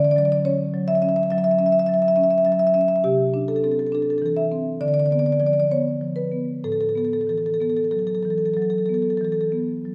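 A contemporary classical piece for solo marimba, this short passage from a longer work has a warm, playful mood and moves with a free, rubato feel over an unhurried pulse. The marimba, played with medium mallets on rosewood bars, carries everything alone from 0.0 to 9.9 seconds, spanning from A2 up to E5. Its tone is woody and sits up front. The harmony drifts from Dmaj9 to Cadd9, then to Dm6 and finally Asus2. A recital hall's wet reverb surrounds the instrument, and the room sound is heard from further back, letting each note bloom and linger.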